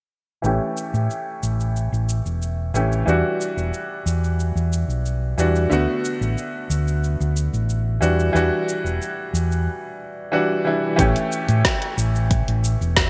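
Relaxed and smooth, this sunset chillout excerpt at 91 BPM in 4/4 sets a clear, worn grand piano, low-pass filtered with delay and a filter sweep through its first 11.0 seconds, over a round, up-front hollow-body electric bass and a deep house kit of woody snare, dark hats and shaker in gated reverb, cycling A7, Em9, D6 and Em9 before a deep electronic kick joins at 11.0 seconds, all framed by light digital ambience and bright 1980s-style production.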